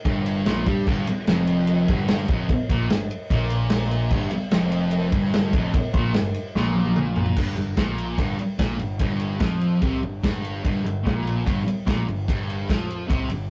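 Garage rock with a swaggering, raw attitude, built on a thick, double-tracked fuzz guitar riff sitting up front beside a growling, overdriven picked bass and a vintage acoustic drum kit with dark cymbals, a punchy kick and a rolled-off top. A drum fill from 6.6 to 7.4 seconds carries the piece into a new section, which runs until the cut at 13.5 seconds. The sound is a rough rehearsal-room recording with wet small-room ambience, tube saturation and a cassette-tape grit.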